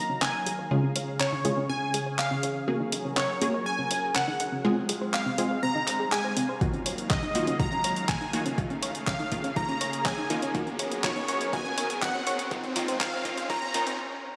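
Expansive and uplifting, this progressive house build-up in Db major moves at 122 BPM in a straight 4/4, cut from a longer piece. A bright, catchy unison lead with vibrato carries the melody through a dub echo, over a thick, airy pad that adds chorus, phaser and sidechain pumping to its sustained chords. A punchy, detuned unison pluck plays filter-swept stabs with tape echo, while a round analog pluck spins chorused, cassette-tinged arpeggios under its own filter sweep, and a tight, dark sequencer bass sits very quietly beneath. An up-front, overdriven deep house kit supplies handclaps and pumping hi-hats, a background riser enters at 2.5 s, and a deep, overdriven electronic kick joins at 6.6 s. The chords cycle through Ebmadd9, Db, Gbadd9 and Fm inside a wet hall reverb, building until a stop at 14.0 s.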